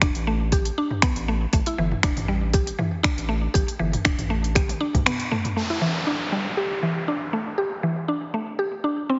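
A woody, mallet-like synth pluck leads this short afro house excerpt, spinning bright, percussive arpeggios through chorus, tape echo and a gritty vintage 12-bit sampler texture, all pumping against the sidechain. Beneath it, a round analog bass with a mellow, sustained tone sits up front and pumps in time, while a deep electronic kick and a deep house kit of finger snaps, smooth hi-hats and toms carry the 119 BPM groove with a gentle 16th-note swing. The mood is earthy and warm, grounded in E minor, with a drum fill running from 4.6 seconds through a band accent at 5.1 seconds. After the bass, kick and kit drop out, a downlifter enters at 5.6 seconds as the harmony moves to A7(no3), while the pluck rings on to the end. A lush hall reverb surrounds the mix, and the heavily compressed, radio-like sound keeps the top end dark and dense.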